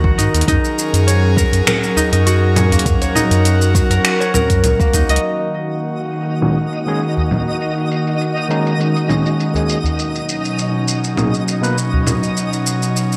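Organic downtempo at 101 BPM in Eb minor, earthy and hypnotic with a light swing: this excerpt opens with an airy, breathy pad pumping under chorus, ringing concert harp arpeggios trailed by digital delay, a round analog bass with tube saturation, an overdriven electronic kick, and a deep udu, joined at 0.2 seconds by a small-room deep house kit of congas, finger snaps, hi-hat and shaker with gated reverb, before filter sweeps on the drums and pad arrive at 5.2 seconds, a twinkling granular texture with octave-up shimmer enters at 6.0 seconds, and a barky, gritty tine electric piano through a combo amp joins at 6.4 seconds, set in a moderate plate reverb with a bright 1980s-style digital sheen.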